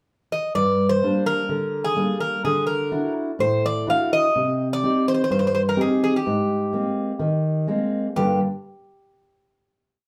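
A straight 4/4 pulse at 126 BPM carries this brief, brooding Greek folk piece in G phrygian: after a short pickup, the fingerpicked steel-string acoustic guitar lays down oompah bass notes and chord figures with fresh strings and audible finger squeak through Gm, Dadd9, Cm and Abadd9, while the bright, metallic double-strung bouzouki, up front, spins an ornamented modal melody with some octave-doubled strings from 0.3 seconds, both set back in a small, reverberant room before settling on a final Gm chord at 8.2 seconds.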